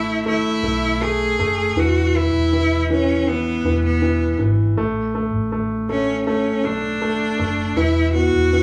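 A close, clear cello carries the bowed melody with vibrato in this tender, heartfelt pop ballad at 80 BPM in A major, with a bright, up-front grand piano as accompaniment and a dark, round, foam-muted vintage electric bass underneath, all three playing together as a live band in one room with moderate studio reverb, across a brief 8.6-second cut that moves from Asus2 to E5 and back before landing on Esus2.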